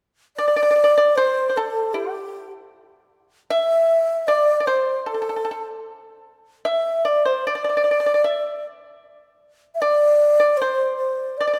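A breathy bamboo xiao with soft attacks, vibrato and an unsteady tone carries the graceful, festive melody up front, while a dry, percussive fingerpicked pipa plays a second line alongside it in this rubato Chinese traditional chamber piece at 76 BPM in 2/4 and the D shang mode, set in a moderate concert-hall reverb and cut from a longer piece.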